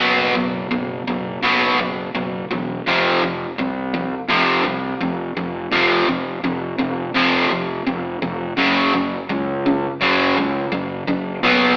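Euphoric and cinematic, this post-rock excerpt from a longer piece builds at 84 BPM in a straight 4/4 over power chords moving from B5/F# to F5 and F#5, with a crunchy, bright, double-tracked picked electric guitar riff up front and a growly, punchy fingered electric bass pushed through fuzz and overdrive, all heard as a band playing live in a wet stone room with an AM radio colour.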